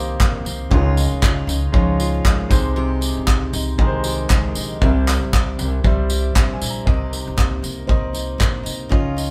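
A natural country drum kit sits up front in this short acoustic pop excerpt, its punchy kick, handclaps and tambourine entering at 0.2 seconds with a small-room character. The mood is reflective and tender, moving at 117 BPM in 4/4 with a 16th-note swing feel, as the band plays live together in one room under moderate studio reverb. A picked steel-string dreadnought guitar gives full-bodied accompaniment, while a concert grand piano adds an intimate, polished presence with deep bass, long sustain and audible action noise. Beneath them, a pizzicato upright bass on gut strings provides a woody, dark, thumpy low end. The harmony moves from Cm7 through Dbadd9 and Abmaj7/C to C, and a grand piano fill from 5.8 to 6.9 seconds leads into a new section that returns to Cm7 before the clip is cut off.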